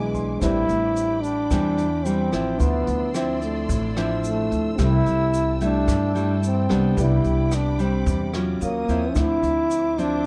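Intimate, wistful bossa nova at 110 BPM in A minor, where a breathy, whispered trombone with light vibrato carries the melody up front over fingerpicked nylon-string guitar, a woody, growly pizzicato upright bass, distant jazz brushes with a boomy kick and rim click, a grainy tube shaker in the background, lush bowed strings with portamento, and a warm baby grand that opens with a brief fill and then sits back with audible action noise, all in a dark, warm production with little reverb as the harmony moves through Am11, Dm9 and Cmaj9#11.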